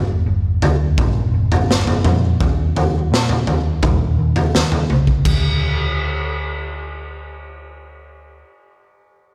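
Lightly reverberant and brooding, this dark quiet-loud alternative rock fragment at 84 BPM in straight 4/4 sets a round, amped hollow-body short-scale picked electric bass, moving between G1 and Bb2, under a raw garage drum kit that enters at 0.6 seconds, gritty and saturated in a pumping small room with a punchy kick, medium-tuned snare, crash cymbal and toms, sitting up front with a rolled-off top, until a drum fill at 4.9 seconds leads into the next section and the drums stop at 5.4 seconds, leaving the bass alone.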